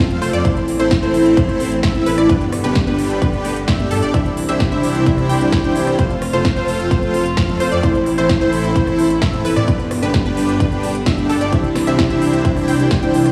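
Floating, softly bowed strings, a background unison pluck arpeggio with digital delay, a huge, airy supersaw riff up front and a thick, chorused, saturated detuned saw bass open this euphoric, uplifting festival progressive house excerpt at 130 BPM in C major, joined at 0.1 s by a dark, boxy grand piano and a big-room kit of punchy snare, rim click and crisp hats, then at 0.4 s by an up-front, tape-warm electronic kick, while the sidechain-pumping strings, pluck, supersaw, bass and piano cycle through Am, G, Cadd9 and F in a bare stone room's reverb.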